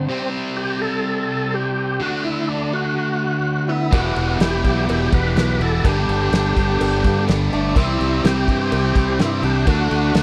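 This brooding, gritty classic rock excerpt opens with a thick, overdriven tonewheel organ carrying the melody through a slow rotary speaker, chorus vibrato, audible key click and a slapback echo, alongside a cranked stack guitar that plays a bright, up-front riff with a touch of spring reverb. At 3.7 seconds a dark, nasal lead guitar with a parked wah adds a second line. At 3.9 seconds the rest of the band arrives. A growling, overdriven fingered bass sits up front, and a damped 70s drum kit brings a fat snare, tight kick and dark crash cymbals. A second biting overdriven guitar plays another riff in the background, while a very quiet picked dreadnought acoustic and a metallic cowbell fill out the texture. The harmony moves from a C power chord through D, Emadd9 and Gadd9 before returning to C and D, all captured in a dry, close 1970s-style studio sound.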